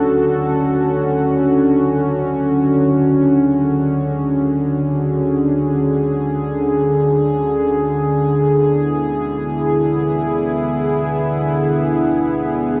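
In free time, this peaceful ambient excerpt in D lydian features a solo analog pad, placed up front, that blends sawtooth and triangle tones with a sub octave beneath. Its slow attack, sustained body and long release give it a smooth, dark glow, with chorus and delay on the pad. The harmony rests on Dmaj7 before moving to E7 at 8.3 seconds, all inside a huge, wet reverb with an 8.6-second decay and a warm production.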